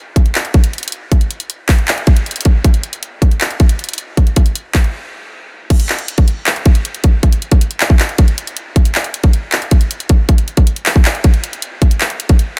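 A trap drum kit opens at 0.2 seconds with a hard-clipped kick, bright hi-hats, handclaps and crash cymbal, sitting up front with an electronic, small-room character. The hip hop groove runs at 157 BPM in a half-time 4/4 feel, its wistful, dreamy mood carried by the drums alone through a dense, heavily limited modern master with little reverb. A break arrives at 4.9 seconds before a new section begins at 5.7 seconds, and the kit plays until 12.5 seconds in this cut from a longer piece.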